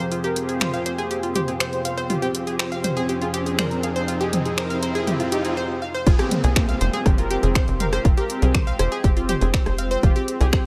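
A straight 4/4 pulse at 121 BPM drives this cinematic, dramatic melodic techno passage in F minor, opening on an Fmadd9 chord as an overdriven house drum kit of finger snaps, bright hats, rim clicks and toms backs a smooth, detuned supersaw melody whose low-pass filter sweeps through the build-up, round analog pluck arpeggios, a full-bodied resonant pad in the background and an evolving pulse-width drone. The supersaw and pluck trail dub echo, the pluck, pad and drone carry chorus, and a background riser climbs until the drone drops away at 5.6 s for a short break. At 6.1 s the drop lands with a punchy, up-front overdriven kick and a tight, driving sawtooth sequencer bass, every synth part pumping against the sidechain as a downlifter sits behind, all in light reverb.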